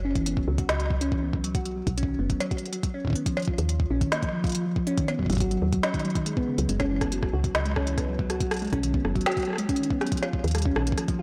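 A straight 4/4 pulse from an overdriven electronic kick and an organic-sounding electronic kit of snare, smooth hi-hat, rim click and cowbell, with delay on the kit, drives this melancholic, intricate IDM fragment from 0.2 seconds. Up front, a ringing, harp-like synth pluck with chorus, delay and a moving notch filter sweep spins mellow arpeggios over a round, dark, woody FM bass, as the chords circle F#5, B5, D#5 and G#7(no3). A lush hall reverb surrounds the blown-out, overdriven mix.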